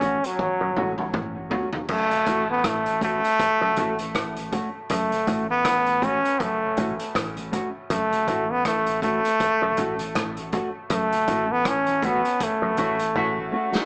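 A wet spring reverb and small-speaker sound frame this laid-back, meditative roots reggae excerpt at 80 BPM in F# minor, where a brilliant, up-front trombone with vibrato carries the dub-echoed melody over a dark, chorus-washed electric guitar, a deep round sub bass, a muted, stringy clav riff through auto-wah from 0.6 seconds, and a vintage drum kit with a punchy kick and pumping room sound, with drum fills at the opening and the very end and a band accent near the close as a tight horn section enters at 12.0 seconds.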